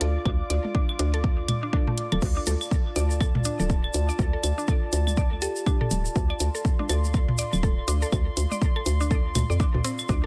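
A sparse, cool minimal techno groove in D minor at 122 BPM, swung on the 16ths, opens with a hollow, knocking FM bass, a woody, mallet-like synth pluck riff with dub echo and a warbling, nostalgic lo-fi pad, all three pumping under the sidechain, plus a house kit with bright, overdriven hats and crash. A punchy, up-front overdriven kick arrives at 0.3 seconds alongside tape-toned electronic claves and toms thrown into dub echo, and a grainy, close tube shaker joins at 2.2 seconds. At 5.4 seconds a dark, tine-like thumb-piano pluck sounds one brief G4 in the background of this echo-heavy, lightly reverberant mix.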